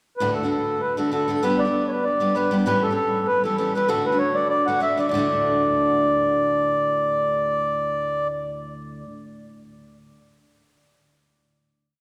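A swung reel rhythm at 196 BPM in 4/4 drives this short, rollicking and cheerful Celtic folk piece in D major, moving through D, G and A7 before settling back on D. A mellow, reedy accordion sits close and up front with a round, full single-reed tone, carrying a song-like melody built from short motifs. Beneath it, a picked steel-string acoustic guitar strums open chord shapes and plays on after the accordion stops, until 9.1 seconds, all set in the wet, lingering reverb of a church.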